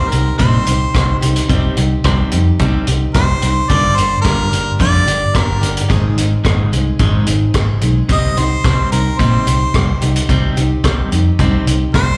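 Folk rock with a heartland rock lean, this reflective, dusty fragment of a live club gig is carried up front by a clear, punchy harmonica melody trailed by tape echo, moving through C minor, G minor and A-flat before returning home at 8.1 seconds. Beneath it, a bright picked steel-string acoustic guitar with slapback echo supplies the accompaniment, while a twangy, scooped electric guitar at the edge of break-up plays a riff in the background. A round, dark fingered bass and a vintage kit with a punchy kick, rolled-off top, hi-hat and rim click sit forward in a light club reverb heard through the venue's PA.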